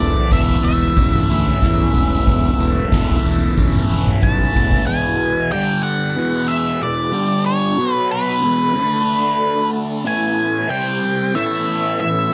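Psychedelic rock at 92 BPM with a hazy, trippy mood, this excerpt sets an octave-fuzz lead guitar melody and a thick, double-tracked fuzz guitar riff with phaser up front, while a percussive tonewheel organ with key click and slow rotary speaker holds sustained chords in the background throughout. A round, punchy overdriven bass, a soft-mallet drum kit with boomy kick and fat snare, and a jingly tambourine play only through the opening, with the drums closing on a fill from 4.2 to 4.9 seconds. After that the guitars and organ carry on alone over shifting chords in light small-room reverb.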